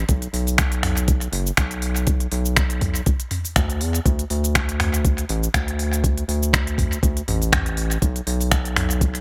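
A round, deep analog bass sits up front in this hypnotic, spiritual afro house excerpt, its mellow, sustained tones striking with a fast attack and pumping against the sidechain throughout. A knocking electronic kick and a close afro-pop kit of finger snaps, smooth hi-hats, shaker and toms carry a gently swung 16th-note feel; the kit has tape echo, and both drum parts sit in a small room. Light reverb and digital ambience give the whole mix an echo-heavy space.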